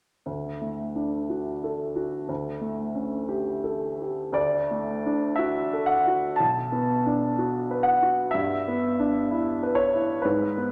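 The rhythm moves in a free, rubato four, stretching and relaxing as a romantic classical nocturne for solo piano. The mood is tender and nostalgic, carried entirely by a clear upright piano that enters at 0.3 seconds and sounds until 10.7 seconds, spanning from low bass notes up into the upper treble. Its tone is woody and slightly detuned, with a long sustain that lets each chord ring. The instrument sits present and up front, wrapped in the wet reverb of a recital hall. The harmony settles on its home chord, shifts to a seventh chord over the same bass, then opens into a second passage at 4.4 seconds that drifts through gentle minor-seventh colours before this fragment of a longer piece breaks off.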